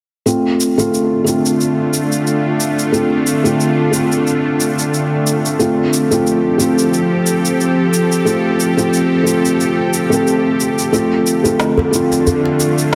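A gently swung 4/4 groove from an electronic shaker and snare drum sets an unhurried, organic downtempo pulse, its woody snare carrying a tape-warm, small-room character. Over it, a felt-muted upright piano plays close and intimate accompaniment, dark and mellow with its action noise plainly audible, roughened by vintage 12-bit sampler grit and trailed by a digital delay. From 0.9 seconds a bowed-like drone holds sustained chords: a bright, tense, string-like sawtooth layer with detuned unison voices, a breath of noise, vibrato and a slow attack that blooms into its own reverb. The harmony moves from Dm7 to F and back to Dm7 at 10.9 seconds, keeping the meditative mood calm and steady. Near the close, at 11.4 seconds, a djembe adds tight, cracking hand strikes. The whole piece sits in a spacious concert-hall reverb yet comes across heavily compressed, like a radio broadcast, in this short passage cut from a longer work.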